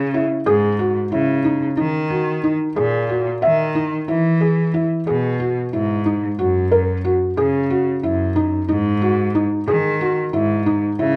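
Contemporary instrumental chamber music in 7/8 at 182 BPM (counted in eighths), with a hypnotic, pensive mood and tuning set to A4 = 438 Hz, cut from a longer piece. A felt-muted upright piano plays soft, dark arpeggios with thick felt and audible action noise, while a single bowed cello carries the bass line with a rich, smooth tone and vibrato; both play throughout. Close, detailed microphones and light reverb frame the harmony as it moves from C#m to D#m, then shifts at 4.1 s into a second section through E, F#5 and G#5.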